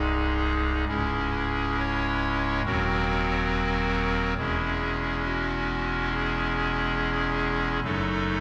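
Dark and grave, this brief classical fragment, cut from a longer chorale-style piece for pipe organ, moves with a rubato feel in 4/4. The organ plays alone throughout, voiced on a hollow clarinet reed solo stop with a baroque character, a touch of chiff at the attack and a tremulant giving the tone a waver. It sits up front in the sound, spanning a range from B#0 up to C#5. The chords pass through minor and diminished colors, moving from G#/B# to C#m and on through inversions before arriving at D#dim/F# near 7.8 seconds. A wet church reverb with a long three-second decay surrounds the instrument, lending the short passage a solemn, spacious atmosphere.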